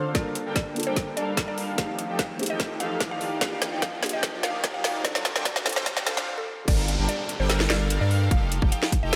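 A smooth, detuned supersaw riff pumps under a phaser through this bittersweet, dreamy half-time future bass clip, joined in the background by a woody, round mallet-like synth pluck melody with chorus, tape wobble and delay, and a dark, boxy felt-muted upright piano that accompanies until 6.7 seconds. A hard-clipped electronic kick and a trap kit with a woody snare, metallic hats and crash drive the build-up, which features a filter sweep, a drum fill and a riser that runs to 6.3 seconds before a brief break. The drop lands at 6.7 seconds, where a deep, thick, saturated sub bass enters up front, while the riser and downlifter layer stays in the background and a lush hall reverb surrounds the mix.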